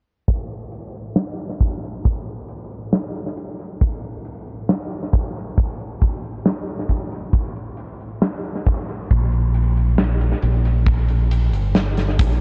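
From 0.3 s, a big acoustic drum kit opens this dreamy, faded vaporwave piece at a slow 68 BPM in 4/4. A punchy, up-front kick sits under hi-hat and a medium-tuned snare that carries dub echo, with both the kick and the kit roughened by vintage 12-bit sampler grit and set in a pumping hall sound. A warm fingered electric bass enters low at 9.1 s, all heard through an echo-heavy, cassette-tape haze with a low-pass filter, light reverb and a filter sweep running throughout.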